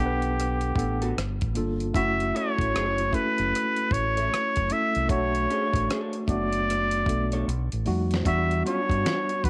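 A dry, close sound frames this short cut from a longer sultry, soulful R&B and neo-soul piece, moving at 76 BPM in 4/4 with a swung sixteenth-note feel. Up front, a trumpet with a straight mute carries the melody in a nasal, breathy, whispered voice with light vibrato and a soft attack, touched by slapback echo. A worn tine electric piano, slightly out of tune and heard as if through its built-in speakers, supplies the accompaniment, while a deep dub fingered electric bass sits round, dark and up front beneath it. The dusty sampler-style drum kit comes in at 0.2 seconds with a thumpy kick, fat snare, rim click and hi-hat, all gritty and compressed, and plays a fill from 7.5 to 8.3 seconds. Entering at 1.0 seconds and staying in the background, a picked electric guitar through a small old amp adds a lo-fi, slightly broken-up second line with its own slapback echo. The harmony drifts from Gmaj9 through Gm7, F#m7 and Bm9 to B7b13, settling on Em9.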